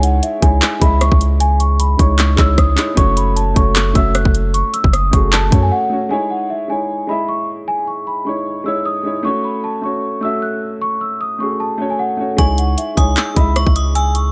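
A dry mix carries this eerie, hard-hitting half-time trap excerpt at 153 BPM in C# minor, where a delicate, bell-like celesta melody rings over a dark, worn baby grand piano with audible action noise, both softened by low-pass filtering, while an overdriven trap kit with a hard-clipped kick and bright hats and a deep, sine-toned 808 bass sit up front, the drums dropping out at 5.6 seconds and the bass at 5.7 seconds before both return at 12.4 seconds alongside a metallic, inharmonic FM bell line with chorus and tape echo.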